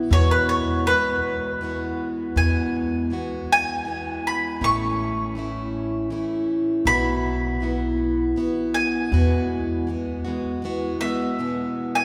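A picked, plugged-in steel-string acoustic guitar opens this short, peaceful acoustic folk passage, its jumbo body giving a warm, full-bodied sound with audible finger squeak, while a bowl-back mandolin takes a bright solo over the first 2.4 seconds. The mandolin's double strings ring out up front as it carries the melody high above the guitar's accompaniment. Underneath, a pizzicato upright bass with steel strings supplies a woody, dark, thumpy low end until it drops out at 10.6 seconds. At a gentle 80 BPM in 3/4 with a straight feel, the music sits in E major, moving from Eadd9 to A and Bsus4 before settling back on Eadd9. A long cathedral reverb from a church or concert hall wraps the trio in a spacious, nostalgic glow.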